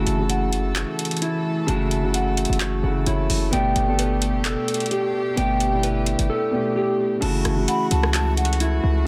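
A dense, heavily limited modern mix with small room ambience frames this eerie, menacing trap beat, cut from a longer hip hop piece and set in a half-time feel at 130 BPM in F# phrygian. Up front, a dark, vintage concert grand piano plays accompaniment with deep bass and long sustain, softened by a low-pass filter, while a chamber string section holds bowed chords with gut-string tone, light vibrato and a reedy edge. A clean, fingered electric guitar plays arpeggios above, shaded by a low-pass filter and delay. Beneath them, a punchy 808-style sine bass hits heavy with a fast attack and a noise layer, and a booming analog drum machine, re-recorded in a small space, adds crash cymbal, handclaps, metallic hi-hats and rim clicks. The harmony moves from F#m7 to Gadd9 at 3.5 seconds and back again, and at 7.7 seconds an airy, hollow concert flute enters briefly with a delayed second line.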